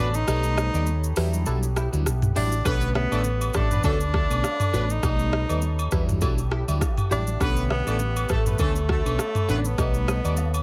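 A forceful tenor saxophone carries the melody in a jazz style, its smooth top touched with digital delay, while a horn section with light vibrato and octave doubling plays a loose second line until about 9.6 seconds. This is a sultry, hypnotic afrobeats groove with a gentle swing, cut from a longer piece. A round, punchy hollow-body bass sits up front, and an electronic afro-pop kit with a deep kick and metallic hats drives it, the kick dropping out between 0.3 and 2.7 seconds. A barking FM electric piano adds biting, percussive chords through a phaser, and a bright, scooped clean guitar riff with chorus and delay sits in the background. Agogo bells and woodblock enter at 2.7 seconds, sounding distant as if in a large room, while a moody sawtooth pad holds sustained chords, cycling through minor ninth and altered dominant harmonies in a dry, close mix.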